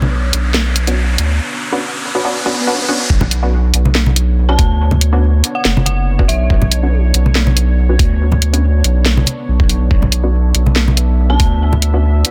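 A thick, saturated triangle sub bass sits up front in this meditative, dark deep dubstep piece at 141 BPM in B minor, with a swung, half-time feel, beneath a moody sawtooth pad on a Bmadd9 chord and muted, detuned dub chord stabs colored by chorus, cassette tape and dub echo. A riser and swell, with a filter sweep on the stabs, builds to the drop at 3.1 seconds, where a gritty, thumpy, pitched-down kick joins a layered, produced garage kit with a cracking snare and hi-hat, plus bright acoustic congas played with soft hands. An eerie, inharmonic FM bell carries the melody from 4.5 seconds, its chorus and echo hanging in a dense, heavily limited digital space.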